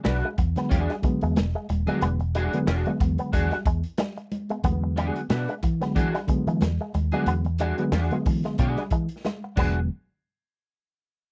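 A crunchy breakbeat drum kit and a slightly broken-up electric guitar open this energetic funk excerpt at 91 BPM, with a 16th-note swing and a single E9 chord carrying the groove in E mixolydian. The drums sound gritty and saturated with dark cymbals, a punchy kick and a medium-tuned snare, sitting up front in a small room, while the twangy accompaniment guitar is treated with ensemble chorus. A foam-muted vintage bass, round and amped with tube saturation, joins almost at once and sits up front beside the kit. Very quiet, thick-skinned congas add a band-limited vintage colour underneath, and a bright, clean, picked guitar through an envelope filter plays a tremolo-shaded riff in a narrow range. A reedy electric piano enters at 0.6 seconds with stabs through its built-in speakers, pulsing with harmonic tremolo. A drum fill at 9.2 seconds closes the groove before the parts stop, and the whole has the dry, close sound of a 1970s studio.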